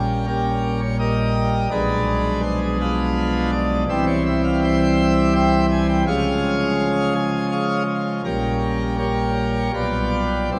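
Classical chorale-style music for solo pipe organ, this brief passage carries a solemn, grave mood at 83 BPM in 3/4, its pulse loosened by rubato and its pitch set slightly high, with A tuned to 441 Hz. The organ plays alone for the full 10.6 seconds on a plenum registration, its mixtures giving a full, brilliant sound with a baroque voicing that sits up front, spanning from Bb1 in the bass to Ab5 at the top. The harmony moves through a shadowed progression, opening on Gdim/Bb, passing through Bdim7, then settling onto C and Db before returning to Gdim/Bb and closing on G7/B. A wet church reverb with a 3.3-second decay surrounds the instrument, and the listener seems placed further back in the room, so the chords bloom into a resonant acoustic space. Cut from a longer piece, the fragment ends on that unresolved dominant, leaving the music suspended.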